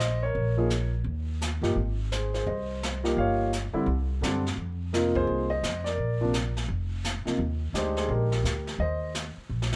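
Warm and relaxed, this swinging jazz piano trio snippet has an up-front, intimate grand piano carrying the melody with deep bass, long sustain, audible action noise and a touch of plate reverb. Its lines sit over an up-front, woody pizzicato upright bass with steel strings and a distant, roomy brush kit with a medium-tuned snare and boomy kick. The piano drops out at 9.1 seconds, and the drums close with a brief fill at 9.5 seconds.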